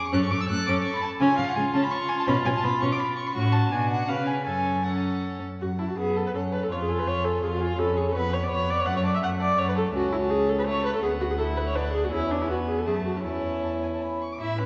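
In a rubato triple metre, this spirited, lively passage from a quick classical-period string quartet movement sets two dark, nasal violins, one carrying the high melody and the other a second line, over a smooth-topped viola accompaniment and a rich cello bass with light vibrato, all played in reedy gut-string period style, with the violins sounding distant while viola and cello sit up front in a wet recital-hall reverb heard from further back in the room, and the music moves to a new key at 9.9 s.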